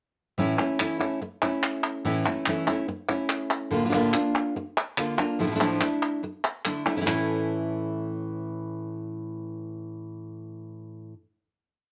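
A home cassette recording with dulled highs and a moderate studio reverb frames this short, mournful and dramatic flamenco piece in straight four. Up front, a full-bodied nylon-string guitar with fresh strings mixes fingerpicking, rasgueado strumming and taps on the top, with audible finger squeak, as crisp, close palmas hand claps mark the cycle until 7.2 seconds. The harmony darkens from A to Bb over an A bass before settling through minor and suspended colours into a final A chord at 7.1 seconds that rings to the end.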